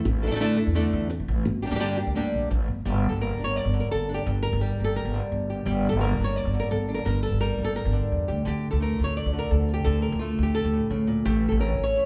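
Flamenco in a mournful, dramatic mood at 171 BPM, this brief excerpt from a longer piece pairs an up-front fingerpicked flamenco guitar carrying the melody, with audible finger squeak, against a woody, thumpy pizzicato upright bass on gut strings, the two playing live together in one large studio whose lush reverb lingers as the harmony moves from Asus4 through Gm and Dm to a closing A.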